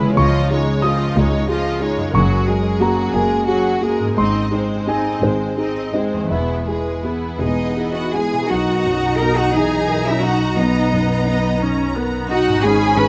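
A deep-toned grand piano with short sustain provides accompaniment in this uplifting, hopeful cinematic excerpt in B major, moving in a rubato 6/8 at 54-61 BPM, as a violin section sings an expressive vibrato melody over a focused second violin line, violas add portamento-tinged accompaniment, a ringing fingerpicked harp plays arpeggios in the background, smooth cellos and double basses hold the bass, and a mellow, distant French horn section brings sustained chords from 7.4 s, captured with close, detailed microphones in a moderate scoring-stage reverb.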